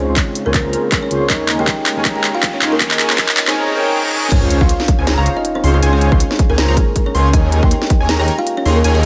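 Light reverb and digital ambience frame this euphoric, lush future bass excerpt, which opens on a build-up where a woody, ringing kalimba melody with tape echo and a smooth, airy supersaw riff under a filter sweep both carry sidechain pumping over a thick, saturated detuned saw bass and a breathy pad that ends at 3.5 s. A hard-clipped electronic kick and a trap kit of sharp snare, crisp hats, handclaps and crash cymbal drive a drum fill, while a very quiet riser, reverse cymbal and sub drop lead into the half-time drop at 4.3 s. There a punchy unison pluck arpeggio with delay enters in the background, and the swung sixteenths give the groove a gentle lilt.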